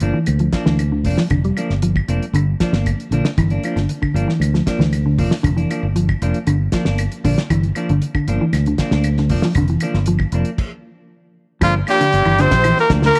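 A straight 4/4 afrobeat groove, funky and defiant, rides on a cloth-damped, thuddy drum kit with a fat snare and dark cymbals, a round, up-front fingered bass, woody background claves, dark fingered arpeggios from a mellow electric guitar and picked stabs from a clean electric guitar wrapped in lush chorus, all in a small, lightly reverberant room, until a stop at 10.6 seconds gives way at 11.6 seconds to a bright, close-miked trumpet melody backed by a growling tenor saxophone and a distant, raspy baritone saxophone.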